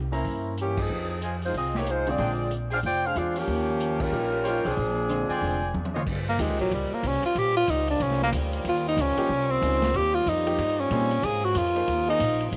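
Light reverb and small-room ambience frame this brassy, swinging big band jazz fragment, where a distant, roomy drum kit with a boomy kick and a woody, growly pizzicato upright bass sit under an intimate grand piano with audible action noise. A mellow saxophone section carries the up-front melody with light vibrato while a smooth-topped trumpet section adds stabs and the band hits accents, and a drum fill around 5.7 seconds leads into a tenor saxophone solo from 6.1 seconds, full of vibrato and scooped notes. Behind the solo, a vintage-sounding trombone section holds sustained chords in the background.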